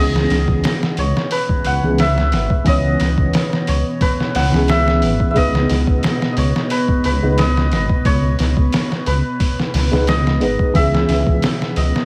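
Vinyl crackle over a dry sound opens this dark, hypnotic trip hop excerpt at 89 BPM in C# minor, where a shimmering santur melody with 12-bit sampler grit and tape echo rides above a thick-felted upright piano with tremolo, the same grit and echo, and audible action noise, while cello tones from a string machine sit in the background with ensemble chorus, a rumbling, detuned saw bass adds tube saturation, and an up-front, muffled, overdriven sampler-style drum kit with a thumpy kick enters at 0.2 seconds as the harmony moves from C#m7 to G#m and back.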